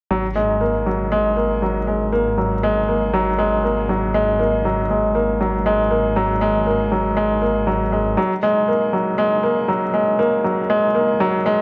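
A clear, intimate grand piano sits up front with its action noise audible, repeating a short-sustained riff through a digital delay from 0.1 to 11.6 seconds over a G#sus2 chord in this melancholic, hypnotic piano and strings electronica piece at 119 BPM. Beneath it, a deep, rumbling detuned saw bass beats with tube saturation until 8.2 seconds, when it drops out and a build-up begins. The whole fragment is bathed in a wet scoring stage reverb with a studio ambience.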